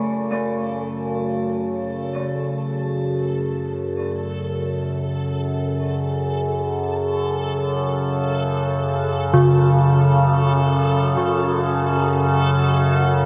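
Dark and ominous, this dark ambient drone piece is a short section cut from a longer work, and it holds a single minor chord throughout. Up front sits an overtone-sweeping synth drone, built from sawtooth and sine tones with ring modulation, whose resonant, moving overtones are thickened by chorus and fade in across all 13.3 seconds. Over it, a gamelan-type bronze metallophone plays arpeggios in a ringing, metallic voice, close-miked and full, with a diffuse ambient delay and shimmer reverb trailing each struck note. Far lower in the mix, a reversed, swelling texture on a single high note adds a dreamy, detuned, granular haze of bright triangle tone, also fading in slowly. The whole is bathed in a huge, wet ambient reverb with a decay of about 7.9 seconds, so the sustained layers blur into one dense, brooding space.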